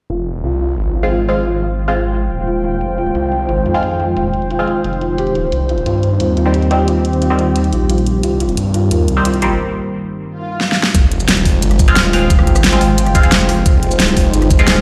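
A straight four-four pulse from an overdriven dubstep drum kit, with its huge, up-front snare, rim click, shaker and hi-hat, drives this tense, mechanical slice of dark technical drum and bass, while a snarling, saturated saw bass growls underneath from the opening moment. Over the bass, a felt-muted upright piano plays soft, intimate arpeggios with audible action noise through a low-pass filter and dub echo, joined by a deep, moody analog pad holding sustained chords and a nostalgic, lo-fi tape-like pad that warbles above. A nasal, band-passed chord stab with ring modulation and phaser cuts through in short, bright hits as filter sweeps move across the drums, piano and stab through the first section, with the harmony shifting from F minor to C minor. A break arrives at 9.6 seconds, where an electronic swell and a drum fill build tension. At 10.9 seconds the drop lands with a knocking, overdriven electronic kick, the stab returning over pumping pads in a big, reverberant room.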